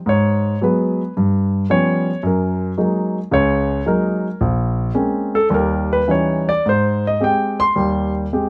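Playful and relaxed, this short excerpt of solo jazz unfolds at 109 BPM in 4/4, with a swung eighth-note feel and a rubato lilt. A single grand piano carries everything, sounding up front and warm with a short sustain as it spans from Bb1 up to C6. The harmony moves through rich extended chords, from Abm7 and G7#11 to Gb69, then Bbm9 and Eb7b9 before arriving on Abmaj7 at 6.7 seconds. The production is dark, with light reverb giving the instrument a gentle sense of space. Cut from a longer piece, the passage runs from 0.1 to 8.5 seconds.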